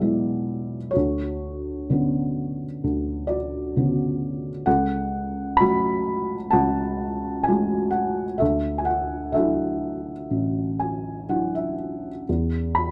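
In a loose, rubato 4/4 around 64 BPM, this calm, peaceful classical passage in D lydian is played by a solo felt-muted upright piano, cut from a longer piece. The piano sits up front with a soft, intimate, thickly felted tone and short sustain, ranging from A1 to B5 as it moves through Bmadd9/D, F#madd9/C# and Dadd9 before a gentle fill from 10.3 to 12.3 seconds settles on an open E5 chord. Light reverb and a dark, warm production keep the mood hushed and still.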